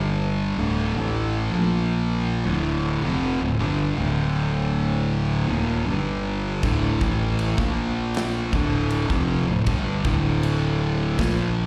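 Sludgy and brooding, this short stoner and doom metal excerpt from a longer piece rolls at a slow, straight four, with a thick, double-tracked fuzz guitar riff sitting up front over a growly, punchy fingered bass run through overdrive. The riff cycles through G5, D5, Bb5 and D minor twice, and at 6.6 seconds a big rock drum kit joins with a boomy kick, medium-tuned snare and crash cymbal. The whole thing sounds like a live gig heard through the venue's PA, carrying the reverb of a recital hall.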